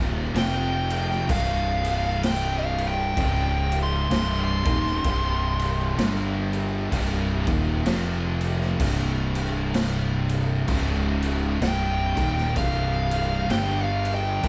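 A heavy, brooding stoner and doom metal excerpt in C minor opens with a growly, overdriven fingered bass up front and a riff from two thick, distorted fuzz guitars in the background, alongside a very quiet double-tracked fuzz guitar, all crawling at 64 BPM with a swung 4/4 feel over F5, C5, Db5, Cm and G5. From 0.4 seconds a fuzzed lead guitar solos high and up front, while a raw garage drum kit with punchy kick, a medium-tuned snare and dark crash cymbals enters with a gritty, saturated, rolled-off sound. The band plays live in one room, with a moderate large studio reverb around them.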